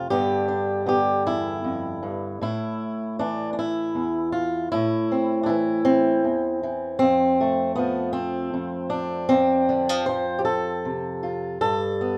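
A fingerpicked swing-style acoustic guitar, dark and up front with light reverb, plays alone in this peaceful, hopeful folk excerpt at 52 BPM in 6/8, moving from G7 to Am at 2.4 seconds, then F and G before the cut at 12.2 seconds.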